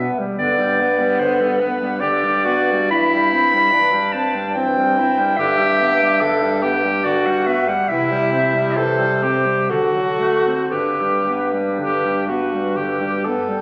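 A clear clarinet carries the melody up front in this lyrical, tender classical piece for single-reed quartet, moving in an unhurried, rubato 3/4 at about 56-75 BPM in G major. Beneath it, a tenor saxophone with vibrato and a vintage colour sits close by as accompaniment, while an alto saxophone with vibrato adds a second line from a more distant, roomy place. A bass clarinet with a soft attack and a warm, vintage tone anchors the bass. The harmony moves gently from G through C/G and C to D7, settling back on G at 10.7 seconds. The quartet sounds as if captured on a phone within a recital hall, its 1.8-second reverb blending with a club-like ambience and a faint mains hum, in a brief passage cut from a longer piece that ends at 13.6 seconds.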